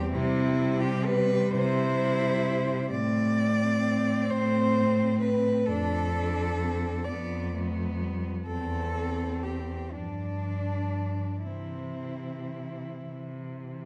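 Tender and lyrical, this classical excerpt for a cello ensemble moves slowly in 6/8 at about 37-44 BPM, counted in dotted quarters, with a flexible rubato feel in C major. A bowed solo cello carries the melody in the middle register with an even, smooth tone, close yet set in the background. Above it, a rich second cello line sits up front with vibrato. A third cello fills in the accompaniment from the background with a focused sound and a smooth top. Entering at 0.1 s, the bass cello is also up front, playing with a soft attack, expressive portamento and vibrato. The harmony moves from C through Am, Dm/F, G9/F and C/E to G5 before settling back on C at 11.4 s, all wrapped in a dark, warm production with a recital hall's lingering 1.6-second reverb.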